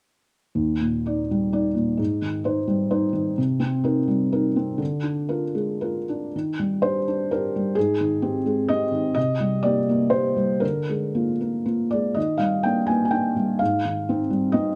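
Heard up front in a dark production with light reverb, a felt-muted upright piano has a soft, mellow tone from its thick felt, with audible action noise adding to the intimacy. This neoclassical minimalist piece, cut from a longer work, moves in a rubato 3/4 between 111 and 132 BPM in Eb major, its hopeful mood carried by a cycle of Ebmaj7, Abmaj7, Cm7 and Bb7/D. The solo piano spans Eb2 to Ab5, and its opening passage gives way at 6.3 seconds to a second section built on the same progression.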